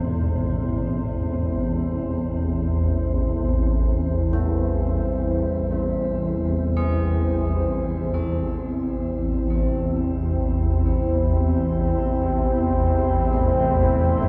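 Unmoored from any pulse, this cavernous, desolate piece of dark ambient drone drifts in free time, cut from a longer work. Down in the low register, a swarming drone of detuned, granular sine tones sits up front, tense and evolving, with slow attacks and long releases bathed in its own reverb. Above it, a deep, moody pad holds sustained chords built from sawtooth and sine layers with a sub octave, wave-folding and ring modulation, its mellow tone thickened by chorus and trailed by a shimmer reverb. Carillon bells play quiet arpeggios with a bronze, ringing character, a minor-third overtone and the knock of a worn iron clapper, repeated through tape echo, and from 7.9 seconds they fade in until the close at 14.3 seconds. A cathedral reverb with a long tail wraps the whole piece in a dark, softly rounded production.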